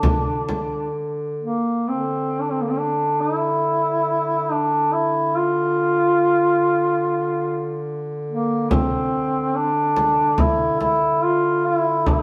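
Set in a wet stone room where the players perform live together, this solemn, longing Caucasian folk lament in D minor moves at a rubato 71 BPM in 4/4, with a warm duduk carrying the up-front melody between Bb3 and F4 with vibrato, scooped notes and a distant, roomy glow over a second duduk holding a low D3 drone, while a deep, close and dry frame drum sounds from 0.0 to 0.7 seconds and returns at 8.7 seconds in this fragment of a longer piece.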